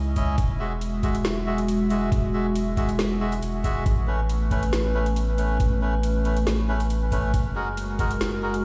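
Deep dubstep at 138 BPM in a half-time feel with a light swing, dark and meditative, moving through Eadd9, Aadd9 and F#add9 in this short cut from a longer piece. A deep, detuned analog pad with a slow attack and chorus holds sustained chords over a thick, saturated sub bass placed up front, while a reedy, breathy melodica enters at 0.2 seconds with stabs trailed by dub echo. A pitched-down, gritty, thumpy kick and an electronic garage kit with a woody snare, metallic hats and shaker sit in studio reverb, and the whole piece sounds as if played on a big sound system in a bare stone room with vinyl crackle.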